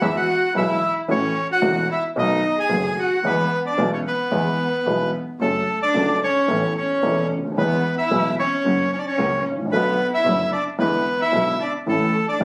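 A reedy, up-front bandoneon carries the melody in this passionate, elegant tango fragment, played with a rubato feel above a nasal, expressive bowed cello that sings a second line with vibrato and portamento. A dark, woody upright piano with short sustain supplies mellow, vintage accompaniment, while a clear, smooth bowed double bass holds the low end with even vibrato. It sounds like a phone recording made in a club, with moderate reverb surrounding all four players across the full 12.4 seconds.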